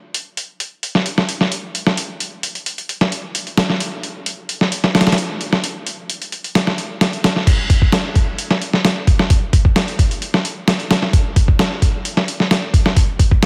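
Breakbeat at 131 BPM in a straight 4/4, this raw, swaggering excerpt features a gritty, dusty soul sampler-style drum kit sitting up front in a small room, its thumpy kick, medium-tuned snare, hi-hat and crash cymbal pushed through a heavily compressed, radio-like sound with light reverb, and a drop arriving at 7.5 seconds that carries it to the end.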